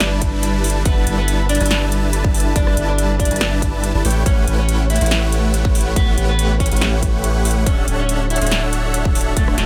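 A half-time 4/4 groove at 141 BPM drives this lush, euphoric future bass passage in G lydian, cut from a longer piece. Punchy electronic kick, layered snare, metallic hi-hats and a rim click sit in a dry studio ambience, while a deep, mellow 808-style sine bass holds long notes up front, pumping against the sidechain. A huge, thick supersaw riff of detuned sawtooth unison with a sub octave and a moving notch pumps in the mix. A dark, slightly broken-up electric guitar, played with the fingers, carries the melody through subtle chorus and dub echo. Behind it all sits a shimmering, ethereal pad with an octave-up shimmer, granular texture and a slow attack, sitting in the background. The harmony moves from G69 to A13 at 4.0 seconds and reaches Dmaj9 at 7.7 seconds.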